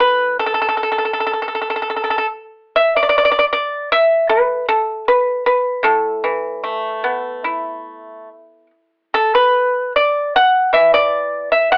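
The rhythm flows freely in rubato over a loose four-beat pulse, giving this short Chinese traditional solo for plucked strings an elegant, serene calm. A single acoustic pipa carries everything, played with fingerpicks and ranging from its low register up into its upper register. Its tone is mellow yet dry and percussive, and it sits up front in a modest studio-sized room with a moderate natural ambience. The sound has the character of a home cassette recording, narrowed almost to a telephone-like band, which lends the instrument a faded, intimate quality. The opening passage runs until 9.1 seconds, when the music moves into a new section that continues until the fragment ends at 11.8 seconds, cut from a longer piece.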